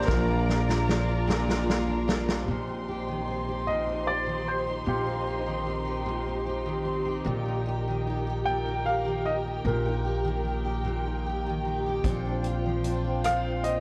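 This excerpt of a tender, swaying pop ballad in 6/8 at 50 BPM opens with a drum fill from a natural, small-room country kit beneath a long-sustaining baby grand piano melody. Around it sit a double-tracked, full-bodied steel-string acoustic guitar accompaniment, lush bowed strings holding soft-attack chords, a woody, growly pizzicato upright bass, and a second picked guitar in the background playing arpeggios with slapback echo. The drums and echoing arpeggios drop out at 2.5 seconds as the harmony moves from Bb through Cm/Bb and Eb/Bb, then return at 12.0 seconds on Bbadd9, all beneath light reverb and the warbling pitch drift of worn cassette tape, tuned to A4 = 441 Hz.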